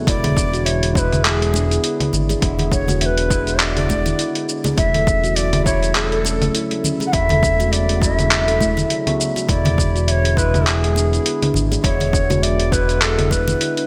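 A hollow, airy cedar flute in the Native American style carries the melody from 0.1 seconds. Its straight, tongued tone sits distant and wrapped in delay over a peaceful organic downtempo groove at 102 BPM in 4/4, with a light 16th-note swing. Beneath it, a round, ringing steel tongue drum struck with soft rubber mallets plays meditative arpeggios, while an overdriven tine electric piano runs through a combo amp, barky and bright, with phaser, delay and sidechain pumping. A smooth sawtooth-and-triangle synth bass holds the low end with portamento, vibrato and a moving notch. A gritty, compressed sampler-style soul kit with handclaps, hi-hat, shaker and congas sits up front with overdrive and gated reverb, layered with a punchy overdriven electronic kick, and separate close, dry hand-played congas sit in the background. In E mixolydian, tuned to A4 = 438 Hz, the harmony moves from E7 to F#m7/E at 4.8 seconds and returns to E7, all under light reverb with a bright 1980s-style digital sheen in this short excerpt from a longer piece.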